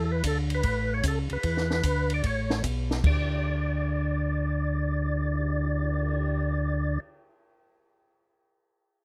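Soul jazz organ trio at 150 BPM in 4/4, with a swinging eighth-note feel and a soulful mood, heard in a short cut from a longer piece. A percussive tonewheel organ carries the melody between A4 and D5, its fat, lightly overdriven tone marked by second harmonic percussion, key click and chorus vibrato through a slow rotary speaker. Underneath, a second tonewheel organ plays the bass line from A1 to E2, smooth and clean with its own key click and slow rotary, sitting slightly louder than the melody. A compact cocktail drum kit enters at 0.2 seconds and drops out at 6.1 seconds, its punchy kick, high-tuned snare, hi-hat and dark ride and crash cymbals joined by a cymbal swell. The harmony moves through Dsus2, A, E5 and Aadd9 before the chords fall away at 3.0 seconds as a second section begins. The sound is dry and close, with detailed, up-front microphones and little room reverb.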